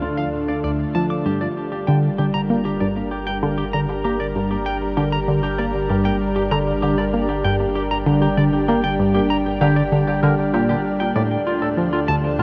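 A steady, straight 4/4 pulse at 97 BPM drives this cosmic, expansive piece of sequencer-driven ambient space music in G minor, cut from a longer work. A tight, nasal sequenced synth with a sawtooth and pulse-wave filter pluck carries the driving riff in the low register, treated with chorus and tape echo. Above it, a lush, thick unison pad of detuned sawtooth and square waves holds sustained chords up front, its slow attack, long release and chorus giving it a warbling, vintage body. A clean, bright semi-hollow electric guitar picks arpeggios in the upper register through tape echo, while a deep, round sine sub bass fades in across the whole 12.4 seconds beneath everything. The harmony opens on Dm, settles on Gm at 1.3 seconds and returns to Dm at 11.2 seconds, all bathed in a huge, wet ambient reverb with a cassette-tape character.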